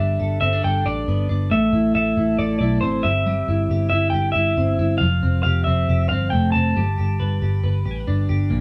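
A bright, twangy twelve-string electric guitar rings out arpeggios across this restless, wistful slice of jangly indie pop at 137 BPM, alongside a lo-fi, slightly broken-up lead electric guitar through a small old amp carrying the melody until 8.0 seconds and a dark, round, foam-muted picked electric bass, all three up front as a band playing live in one room with a wet studio reverb over a Gadd9, Am, C/G and Fadd9 progression.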